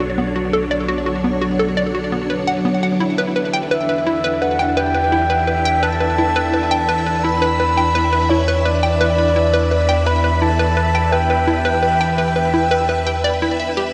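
Expansive and mysterious, this ambient, sequencer-driven space music moves at 85 BPM in a straight 4/4, set in E dorian and drifting from Bm7 to Em7 at 3.0 seconds. From the start, a lush string machine holds full-ensemble chords with a vintage sawtooth sheen, treated with phaser and ensemble chorus and sitting up front. Beneath it, an analog drone fades in as a mellow, evolving bass, its pulse-width modulation and moving notch giving the low end slow motion. A hollow square-wave pluck runs a bouncy riff across the whole excerpt, its bright, detuned attack roughened by 12-bit sampler grit and trailed by delay. At 3.7 seconds a breathy, flute-like lead enters with a soft attack and vibrato, carrying the melody high above the texture with chorus and delay. The mix sits in a huge, wet reverb with a long 7.3-second tail and a cassette-tape character, and the passage is cut from a longer piece.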